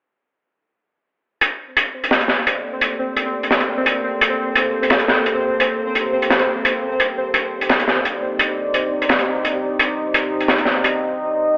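Cinematic and heavy, this half-time drum and bass cut from a longer piece moves at 172 BPM in G minor, with a telephone-filtered sound set inside a lush hall reverb. A crunchy breakbeat kit enters first at 1.4 seconds, its hi-hat and high-tuned snare sounding gritty and saturated, with a rolled-off top and an up-front placement. A bright, pulsing gated texture of unison triangle tones follows at 1.9 seconds, tempo-synced and carrying its own chorus and reverb. A deep ambient pad arrives at 2.5 seconds, holding sustained chords built from detuned sawtooth and sine layers with a sub octave, given a moody, mellow character by slow attacks, long release, chorus and built-in reverb. The harmony shifts from Gmadd9 to Cmadd9 at 7.0 seconds, and the pad holds on after the other parts fall away.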